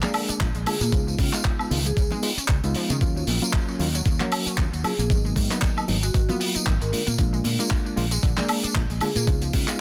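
A thumpy, sampler-style electronic kick drum, tape-warm and re-recorded in a large room, anchors this groovy, cosmic nu-disco excerpt with a swung sixteenth-note feel, entering at 0.4 seconds. Just beneath it, a growly, punchy fingered electric bass arrives at 0.3 seconds, bright and direct. A dry, up-front 70s drum kit supplies handclaps, hi-hat, tambourine and woodblock, with soft clipping on its snare. A reedy, worn electric piano, slightly out of tune and heard through its built-in speakers, carries the accompaniment with fast tremolo and delay, while a lush, detuned sawtooth unison pluck spins arpeggios in the background with sidechain pumping and tape echo. Up top, a metallic, ringing vibraphone played with medium mallets and motor off sits back in a boxy small room, its melody colored by vintage 12-bit sampler grit and tape echo, as very quiet congas, tambourine and bongos add acoustic texture over dominant and minor-seventh harmonies in a dense, heavily limited modern master.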